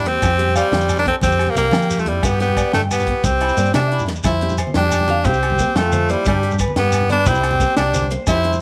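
A straight 12/8 pulse drives this short, joyful highlife guitar band cut, taken from a longer piece and carrying a sunny mood. Up front, a raspy tenor saxophone carries the melody with a gritty, forceful pop edge and light vibrato, while a dark trumpet plays a second line further back, distant and roomy in a jazz manner. A round, hollow-body short-scale electric bass anchors the low end, and a tight funk drum kit with a high-tuned snare and snug kick sits in a small, natural-sounding room, adding a fill at 4.1 seconds as the passage turns toward its second half at 4.3 seconds. Behind them, an electric guitar through a small old amp spins twangy, slightly broken-up arpeggios with slapback echo, and a picked steel-string acoustic guitar with fresh strings fills in accompaniment. Congas with a thin, low-tuned skin and ringing agogo bells sit in the background alongside a grainy, vintage-toned shekere, all over a cycle of Fsus2, G and Cadd9 heard twice under light studio reverb.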